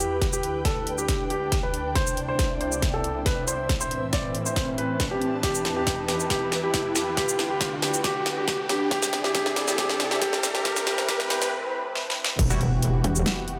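A dark, mellow grand piano carries the melody over lush, warbling unison pads, an ethereal airy pad, a punchy electronic kick, a dubstep kit with a huge snare and bright hats, and a background riser building toward a break before the drop at 12.4 seconds, where an aggressive, metallic wobble bass, a pulsing, detuned pluck wobble bass and a brief supersaw stab hit in this heavy, menacing half-time dubstep excerpt at 138 BPM in E minor.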